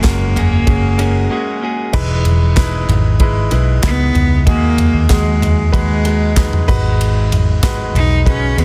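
A bowed cello with focused vibrato carries the melody from the first beat over a polished, present baby grand piano, a dark, round muted electric bass and a punchy, up-front studio drum kit with handclaps and a pumping room sound, while a clean, compressed, direct-recorded electric guitar riff plays through a brief break and stops at 1.9 s, and a very quiet, hollow group handclap sits beneath this warm, anthemic piano-driven pop excerpt at 95 BPM, which moves from F#add9 through Emaj7 and B6/D# to G#m7 in a small room under a dense, heavily limited master.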